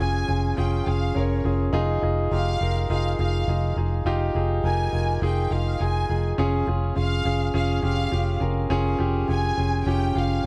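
Piano-driven pop with a dramatic, driving mood, this short passage cut from a longer piece sets a lush, vibrato-rich violin section carrying the melody over an intimate, polished concert grand whose audible action noise and long sustain sit up front. A dark, foam-muted fingered electric bass holds a single low note with a round, amped tone, while the harmony moves from Db/F to Fm7 and back to Db/F at 6.4 seconds. The dark, warm production has a light touch of studio reverb.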